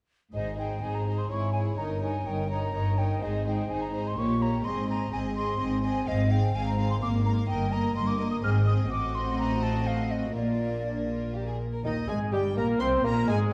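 Lively and graceful, this quick classical-period movement for symphony orchestra moves at 125 BPM in 3/4, shifting from Ab major to Eb major at 6.1 s. A rich, softly bowed first violin section carries the melody with light vibrato. An airy, hollow silver flute and a second violin section play supporting lines over violas, a dark background cello section and a close double bass section, all in gentle sul tasto strings. At 11.8 s a smooth-topped oboe, a punchy yet mellow bassoon and a tight French horn section holding quiet chords join for the closing bars, with a faint, clear clarinet following at 11.9 s, all set in a moderate scoring-stage reverb with a warm, dusky production.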